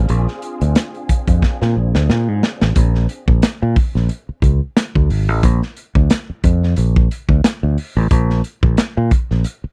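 An energetic 90 BPM funk groove in 4/4 with a light 16th-note swing opens this playful cut from a longer piece, set in Bb mixolydian and tuned slightly flat of standard pitch. A soft string machine holds a silky Bb9 chord for the first 2.7 seconds, its vintage tone shaded by phaser and ensemble chorus and sitting quietly behind the rhythm section. A crunchy breakbeat kit of hi-hat, punchy kick and medium-tuned snare drives the track up front, its saturated, gritty sound dark with a rolled-off top, and a drum fill runs from 1.4 to 2.8 seconds. At 2.8 seconds the harmony drops away and the second section leaves the drums and a growly, bright fingered electric bass to carry the groove on their own through to the end. The dry, close recording has a 1970s studio character with little reverb, keeping the bass and drums immediate and present.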